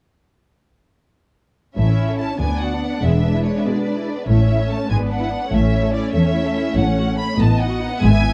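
The double bass section stands out most, its dark, bowed tone carrying vibrato and portamento beneath the ensemble. This is a quick, spirited classical-period movement for string orchestra in a straight 6/8, cut from a longer piece, with every section playing together from 1.8 to 8.3 seconds. The violins carry a focused, lush melody high in their range while a second violin line sits below, and the violas fill in a rich, even accompaniment. Cellos share the bass line with a soft attack and expressive vibrato. The harmony moves between tonic and dominant chords before turning toward a B7 over A near the close, all framed by light reverb in a warm production.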